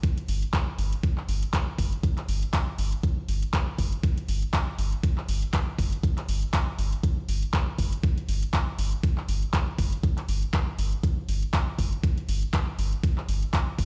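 A swung 4/4 groove at 120 BPM drives this trippy acid house fragment, where a thumpy, overdriven electronic kick sits up front beside a booming, tape-warm analog drum machine with handclaps and metallic hi-hats, while a deep, thick sub bass enters at 0.3 seconds with a fast attack and sidechain pumping, all heard as if played over a big sound system in a bare stone room.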